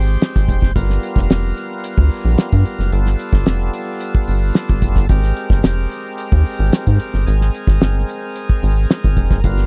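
A straight 4/4 funk groove at 110 BPM rides on a cloth-damped, thuddy drum kit of hi-hat, kick and snare, dry and up front with a fat snare and tight kick, entering at 0.2 seconds beside a rubbery, hollow square-wave bass whose fast, plucky attack sits dark and bouncy up front in the mix. Behind them, an overdriven tonewheel organ holds gritty, thick sustained chords through a slow rotary speaker, moving from Abmaj7 to G7#9 and settling on Abmaj9 at 5.1 seconds. The cool, hypnotic excerpt has the close, dry sound of a 1970s studio, with the tuning sitting slightly flat at A4 = 437 Hz.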